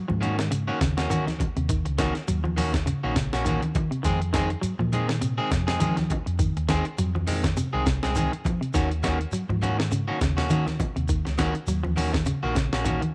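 Funky and hypnotic, this short afrobeat cut rides a swung sixteenth-note feel in 4/4, moving between Ebm7 and Fm7 before settling back on Ebm7 at 8.7 seconds. Up front, a sampler-style jungle drum kit sounds compressed, pitched up and gritty, with a thumpy kick, a medium-tuned snare and hi-hat carrying a tape-warm character from being re-recorded in a small room. A dark, round hollow-body short-scale bass, fingered and amped, anchors the low end, while an electric guitar at the edge of break-up cuts through with picked, slightly broken-up stabs. Behind them, a clean electric guitar picks low arpeggios, low-tuned congas ring out under hard hands, and a grainy, mellow shekere adds a live-room texture. The mix is dry, with little reverb, leaving the drums and stabbing guitar close and present.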